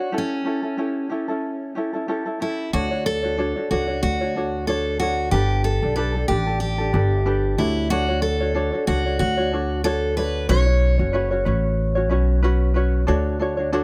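Acoustic pop with a sunny, heartfelt mood, this short cut from a longer piece opens on a picked steel-string acoustic guitar carrying the melody, full-bodied and warm, over a mellow, thumb-plucked tenor ukulele in light accompaniment. At 2.7 seconds a pizzicato upright bass enters up front, woody and growly with a thumpy low end, as the harmony settles into Dmaj7 and moves through Gadd9 and Bsus2. The guitar stops at 12.4 seconds while ukulele and bass carry on to the close, all set in light reverb and studio ambience with a lilting swing.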